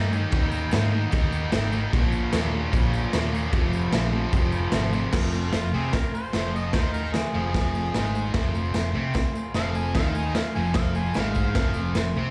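Heard through a club PA onto cassette tape, with small-room ambience and a touch of reverb, this raw, swaggering garage rock fragment in F minor drives along at 149 BPM in straight 4/4 over Eb, Bbm and Fm chords. A gritty, saturated drum kit with a punchy kick and dark cymbals sits up front beside a round hollow-body bass and a bright, double-tracked fuzz guitar riff, while a buzzy vintage combo organ holds spring-reverbed chords in the background and a jingly tambourine sits very quietly underneath. At 5.5 s a clear, close-miked harmonica enters for an overdriven solo with slapback echo, light vibrato and scooped notes.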